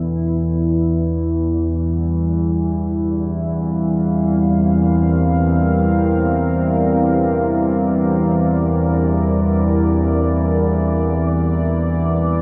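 A low analog drone and a deep pad sound together from the very start of this dark ambient fragment. It is cut from a longer piece, floats in free time and is tuned to A4 = 439 Hz. The drone sits between E2 and E3, its nasal sawtooth and pulse-wave tone evolving through pulse-width modulation and a moving notch, softened by chorus. Above it, the pad holds sustained chords from G3 to F5, a moody blend of unison sawtooth and sine with a sub octave, shaped by slow attacks, long releases, chorus and its own reverb. The harmony rests on E5, shifts to G minor at 0.9 seconds and returns to E5 at 10.2 seconds. Both parts sit up front yet mellow, bathed in a huge, wet reverb with an 8.4-second decay that places them in a vast, echoing space and gives the 12.4 seconds a cavernous, unsettling mood.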